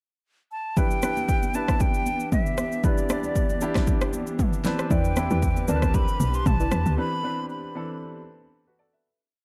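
Amapiano with a late-night, deep mood, where an airy, close-miked concert flute with vibrato carries hook phrases over a polished baby grand piano playing pushed chords with grace notes, a hollow, chorused pad pumping beneath, a punchy, overdriven deep house kit with steady shaker and syncopated rim, very quiet bright congas, and from 4.9 seconds soft background chord stabs with tape echo and a woody log drum bass firing syncopated bursts, before a break and fade-out from 7.0 seconds in a dark, dry production.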